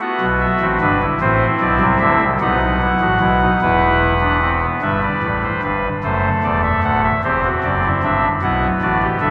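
Classical baroque-style four-part fugue in 6/8 at 50 BPM, contemplative and serious, played solo on a soft reed pipe organ whose up-front oboe solo stop and baroque voicing carry a distinct chiff across a range from D1 to F#5, moving from Em/B through Am and B7 before shifting at 4.8 seconds into a second passage of Em/G, D, C/E and Bm, all bathed in a cavernous cathedral reverb in this short cut from a longer piece.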